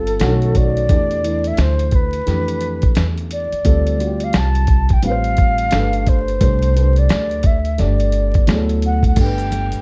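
Jazz-hop at 87 BPM with a swung 16th-note feel in D dorian, this nocturnal, cool passage sets a breathy concert flute melody with vibrato and slapback echo over a boxy grand piano with deep bass and a woody pizzicato upright bass. A gritty, compressed sampler-style drum kit with a thumpy kick and fat snare sits up front beside the bass, while maracas and congas ring faintly in the background from 9.2 s. Vinyl crackle and light reverb lend the production a dark, warm tint as the chords move from B7 and Em7 through Dm7 and G7 toward D69.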